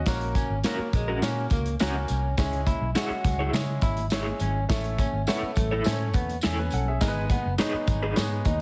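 A bright, woody upright piano opens this passionate, driving slice of uptempo 1960s-style soul at 104 BPM in C# minor, joined at once by a dark, round, foam-muted electric bass, a punchy, up-front acoustic drum kit and a jingly tambourine. A picked, slightly broken-up electric guitar riff follows moments later, while a second lo-fi guitar adds tremolo-soaked stabs and high-tuned, distant congas enter at 2.4 seconds, all wrapped in small-room ambience and a heavily compressed radio sound over an F#, C#m, A, G#m progression.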